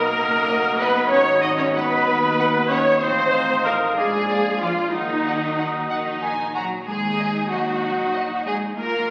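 Crackling like a very old 78 rpm record and bathed in scoring-stage reverb, this playful, whimsical film cue in 6/8 has a sneaky, magical air: a focused, up-front violin melody enters at 0.5 s over a lush viola accompaniment with portamento, a distant second violin line, airy flutes, a solo oboe with light vibrato, mellow sustained French horn chords, and a bowed foundation of cellos and bright double basses, with the flutes, oboe and horns stopping at 6.5 s.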